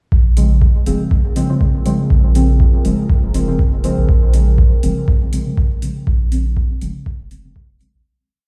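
Heard through a big sound system in a bare stone room with light reverb, this deep, hazy dub techno piece at 121 BPM in Bb minor rides an overdriven, up-front four-on-the-floor kick and metallic overdriven hi-hats under a round, soft triangle-and-square sub bass, warbling 12-bit chord stabs on the off-beats drenched in dub echo and phaser, and a moody sawtooth pad that slowly rises in at 0.8 s, all resting on a single Bbm7 before fading out from 5.4 s to the close.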